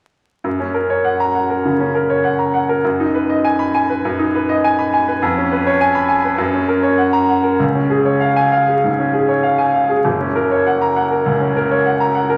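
Vinyl crackle and a wet recital-hall reverb surround a bright baby grand piano that sits up front, its notes ringing with long sustain. The solo piano plays a heroic, brilliant virtuoso study in classical style, moving with a rubato feel across a span from F#1 to B5. Its harmony shifts from the home chord through G#m7/F# and C#7/E# before settling back, in a fragment cut from a longer piece that runs from 0.4 to 12.4 seconds.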